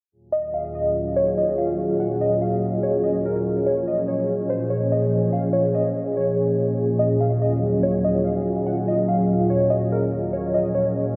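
A dreamy, reverb-soaked mix opens this short fragment of ethereal, melancholic hip hop, its huge ambient space and low-pass filtering giving the whole a hazy, distant glow. At 144 BPM in 4/4 with a half-time feel, the music drifts over a slow alternation of Ebm11 and Bbm7 chords. A glassy FM synth pad, up front with ensemble chorus and its own built-in reverb, holds sustained chords from low Eb2 up to Ab4, its slow attack and long release letting each harmony bloom and linger. Above it, from 0.3 seconds, a crystalline wavetable pluck carries the melody between Bb4 and Gb5, its detuned unison voices, ring modulation and filter sweep lending a warbling, vintage digital edge. Chorus and tape echo trail each quickly decaying note, so the tune hangs suspended in the wash of the room until both parts end near 11.2 seconds.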